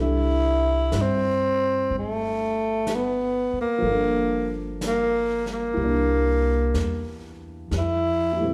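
Bathed in the wet reverb of a church or concert hall, this tender, late-night jazz ballad excerpt swings gently at 62 BPM in C major, with an up-front, breathy tenor saxophone growling raspy subtone melody and scooped notes over a warm upright piano, a dark, thumpy pizzicato upright bass on gut strings, and an airy, polished brush kit that enters at 0.9 s, all moving through C69, Gm7, C9 and Fmaj9.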